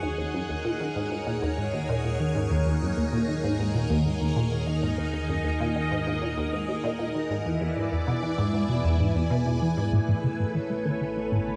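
Cosmic and luminous, this excerpt of ambient, sequencer-driven space music at 97 BPM sets a squelchy, resonant blip pluck riff with phaser and delay up front beside lush, phased string machine chords, while a mellow analog drone bass enters at 1.3 seconds and a bubbling stepped-filter texture sits in the background until 9.9 seconds, when a filter sweep on the synth arpeggio marks a new section as the chords move from Ebm7 through E7 to Aadd9 in an echo-heavy plate-reverb space.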